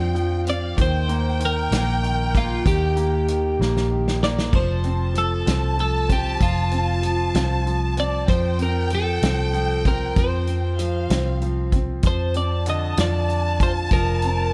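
A twelve-string electric guitar carries the melody from the first moment, its clean, picked, compressed tone shimmering under a subtle chorus, while a lush bowed violin section adds a high second line with expressive vibrato above it. A clear concert grand piano with a deep, open low end fills in the accompaniment, and a dark, round, foam-muted fingered electric bass sits punchy and up front beneath everything. The natural country drum kit joins at 0.2 seconds, a small-room acoustic sound with a punchy kick, medium-tuned snare, hi-hat and splash cymbal, and it plays a fill from 3.6 to 4.5 seconds. This six-eight pop ballad sways at 64 BPM in the dotted quarter, moving from Fsus2 through Eb to F before settling on Bbadd9/F near the close. Light reverb and a small room ambience give the heartfelt, swaying passage an intimate setting, heard as a section cut from a longer piece.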